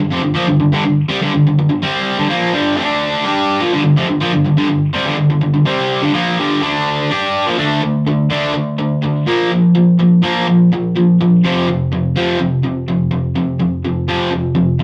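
Rock with an energetic, swaggering feel, this fragment features a lone cranked-stack electric guitar, bright, overdriven and double-tracked up front, that alternates G5 and D5 power chords before turning at 7.6 seconds to a D5, Bb5 and F5 progression, all caught in a rough rehearsal-room recording with a wet, small-room reverb.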